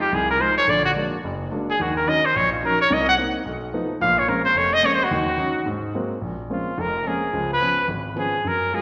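A forceful, vintage-toned trumpet leads this cool, swinging jazz fragment at 216 BPM, soloing up front with vibrato and scooped notes until 6.2 seconds, while a polished grand piano accompanies throughout, all bathed in the wet reverb of a church or concert hall.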